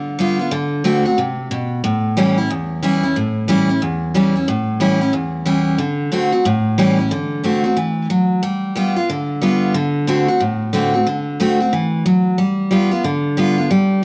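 A picked steel-string acoustic guitar plays alone and sits up front, bright and full-bodied with audible finger squeak, in a retro, upbeat rock excerpt at 182 BPM with a swung eighth-note feel in D mixolydian, tuned slightly low to A4 = 436 Hz. The guitar moves through dominant seventh chords on G, D and A, and at 7.1 seconds a second section begins that leans on D7 and G7. Light reverb surrounds the dreadnought tone over the 14 seconds, which are cut from a longer piece.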